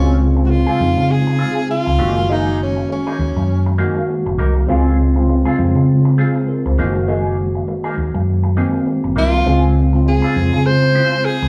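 A breathy tenor saxophone leads this lush, smooth soul excerpt with subtone, vibrato and scooped jazz phrasing, dropping out at 3.8 seconds and returning at 9.2, over a mellow, clean tine electric piano, a round, dark hollow-body bass up front, and a twangy, slightly broken-up lo-fi guitar riff through wah, with the band captured live in one room under a lavish large-studio reverb as Dbmaj7 and Gb69 alternate in a swung groove.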